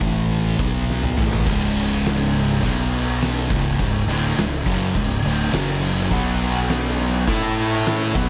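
The oversized, low-tuned drum kit dominates up front, its boomy kick, fat snare and dark cymbals saturated and gritty in a bright, pumping stone room, with a fill from 0.9 to 1.5 seconds. Behind it, two thick, dark fuzz guitars grind out a heavy, hypnotic stoner and doom metal riff in straight 4/4 over a growly, overdriven fingered bass, moving through power chords on A, B, C# and F#. A double-tracked fuzz guitar with a warmer tone joins at 6.1 seconds, all under light reverb in this excerpt cut from a longer piece.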